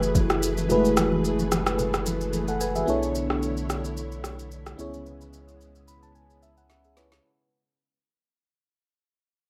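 Amapiano at 110 BPM with a lightly swung 16th feel, this hypnotic, late-night fragment fades out across its length over F#m11, Bm11 and C#m7 chords. An up-front FM electric piano with a soft pad layer, dreamy and warbling through chorus and tremolo, carries the accompaniment and adds a fill from 5.6 s, over lush, sawtooth-edged string machine chords with ensemble chorus and a deep, round sine sub bass. A produced R&B drum kit with soft kick, woody snare, rim click and shaker sits up front and closes with a short fill, while distant, bright congas play in the background until 2.9 s, all within light digital reverb and a rough home-demo mix.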